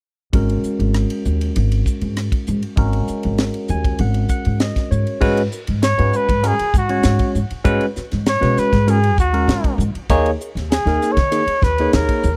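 Electric jazz fusion with an intense, driving straight feel, cut from a longer piece and captured as a dry, close 1970s-style studio recording in a small room. A barky tine electric piano with phaser comps over pizzicato upright bass that is woody and growly, while a tight funk kit with a high-tuned snare and bright cymbals sits up front, the piano taking a fill from 3.4 to 5.2 seconds. At 5.8 seconds a warm trumpet enters with a light-vibrato jazz solo over the G#m7 and D#7sus4 harmony.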